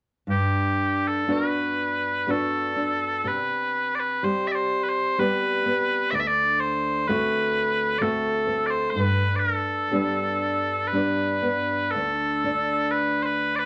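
Set in a moderate studio reverb, this short cut from a longer Celtic slow air in G major unfolds in a pastoral, nostalgic mood at a rubato 57-66 BPM in 3/4, with mellow, sweet small bagpipes carrying a continuous, vibrato-touched solo melody up front while a thumb-plucked classical nylon-string guitar, with audible finger squeak, gives warm accompaniment through Gmaj7, C5, D7 and G before the harmony drops away at 11.9 seconds.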